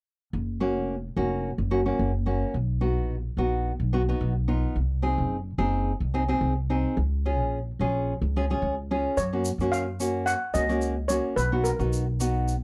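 The sound is dry and close, like a 1970s studio session, with little reverb around the instruments. This is a sunny, bouncy calypso in F# major, moving at 109 BPM in a straight 4/4, cut from a longer piece. A woody, dark pizzicato upright bass with steel strings sits up front from 0.3 seconds, joined at 0.6 seconds by a full-bodied, fingerpicked nylon-string guitar with a deep classical tone, also placed close. Together they carry the harmony through F#maj7, Bmaj7, G#7 and C#. At 9.2 seconds a new section opens as double-second steel pans played with medium rubber sticks take the melody, their metallic, shimmering and airy tone riding over the returning F#maj7 and Bmaj7. At the same moment a grainy, bright egg shaker with a vintage, band-limited character enters quietly in the background.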